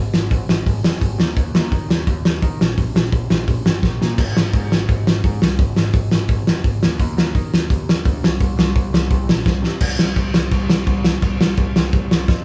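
A loose indie drum kit sits up front in this rowdy, energetic punk rock excerpt, with a punchy kick, a fat snare and dark crash, hi-hat and splash cymbals breathing in a pumping studio room. The tempo is a driving 170 BPM in straight 4/4, tuned to A4 = 438 Hz. Beneath the kit, a growling picked electric bass plays direct and amped, its bright, overdriven tone ranging from F1 to Eb3. Drum fills break up the groove around 3.8 seconds and again at 9.5 seconds, leading into a new section at 9.8 seconds that carries on until the cut. Light reverb gives the sound of a band playing live together in one room.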